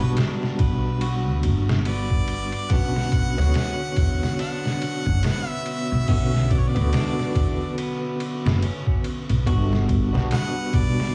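A woody, growly pizzicato upright bass sits up front with a pitched-down, gritty sampler-style drum kit of thumpy kick, snare, hi-hat and ride, setting a brooding, dark trip hop groove with a swung sixteenth feel under vinyl crackle and small-room reverb. A barky, overdriven tine electric piano with fast tremolo and tape echo carries the Gmaj7 and Bmadd9 harmony, while a clean picked electric guitar plays arpeggios in the background. A bright harmonica with light vibrato and scooped notes sings the melody through lo-fi sampler grit and tape echo, and a very quiet, mellow string machine with cellos joins at 2.7 seconds with sustained chords.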